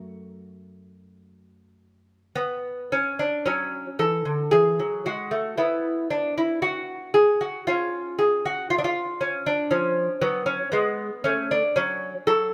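A solo lute opens this brief baroque-style dance, cut from a longer piece, on an F-sharp minor chord, its gut strings fingerpicked with a mellow, delicate touch. The tempo sits around 52-60 BPM in 4/4, played with a rubato feel that keeps the serene, dance-like mood gently pliant. Double courses, some doubled at the octave, lend the instrument a shimmering depth across its range from F#2 to A4. After the opening phrase, a second section begins at 3.5 seconds, passing through a chordless moment before settling on C-sharp at 7.7 seconds and closing on a rootless E suspended chord. Close, detailed microphones place the lute up front, with a light reverb adding a touch of air around it.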